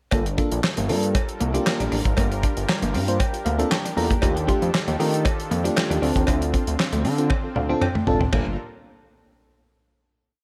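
A mid-tempo boogie beat at 117 BPM in straight 4/4 drives this slick, late-night piece of early-eighties boogie funk in G minor, with a damped 70s drum kit up front, its fat snare layered with handclaps and its gated reverb framing a tight kick and dark cymbals, while a cowbell taps quarters in the background and a fat, saturated analog bass plays a syncopated line with slides and chromatic approach notes. A mellow FM electric piano plays rootless, syncopated chord stabs through a chorus effect, adding short fills at 2.7 and 7.3 seconds, the latter alongside a drum fill. Behind them, a brassy, detuned analog pad with a filter sweep and vibrato sustains the chords, and a clean, twangy electric guitar picks a muted single-note riff bathed in lush chorus, before the band settles on a final Gm9 at 8.3 seconds over faint mains hum.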